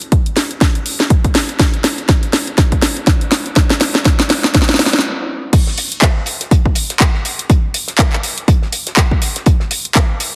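A drum fill on an overdriven, up-front house kit, with cracking snare, bright hats, handclaps and crash, builds over a punchy layered electronic kick in this soulful, bittersweet house excerpt with a lightly swung sixteenth feel. After a brief stop at 5.0 seconds, the drop arrives at 5.5 seconds and a dry, dark, cloth-damped acoustic kit joins low in the mix, its fat snare and rolled-off hats high-pass filtered, with pumping sidechain on the hats. A moderate plate reverb surrounds the parts, and heavy multiband compression gives the whole a dense, radio-like sheen.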